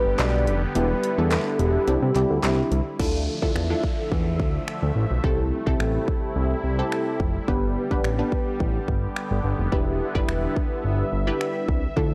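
A round, horn-like synth lead with chorus and vibrato opens this bittersweet, driving 107 BPM dance-pop excerpt, singing briefly over a dark, funky polysynth comp and an airy, evolving resonant pad that both pump with sidechain, as a fat, detuned analog bass and a punchy, up-front electronic pop kit with deep snare, snaps and handclaps arrive almost at once alongside a faint, crisp group handclap, before a quiet downlifter enters at 3.0 s over chords moving from G through Em7 and Cadd9 to Dmadd9 and C6, set in a dry, gritty digital ambience.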